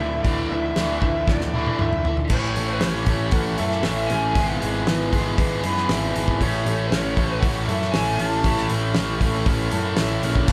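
A straight, driving 4/4 at 117 BPM carries this sunny classic rock excerpt, where a damped 70s drum kit with a fat snare, tight kick and dark cymbals enters at 0.2 seconds and plays a fill from 1.3 to 2.3 seconds, a round, punchy fuzz bass, a bright distorted guitar riff and a warm overdriven guitar riff drive the Dsus2-to-A, E/G# and A changes, a smooth overdriven lead guitar sings the melody above, and a very quiet, bright picked steel-string acoustic guitar adds accompaniment, all sounding like a band playing live in one large studio room with a wet reverb.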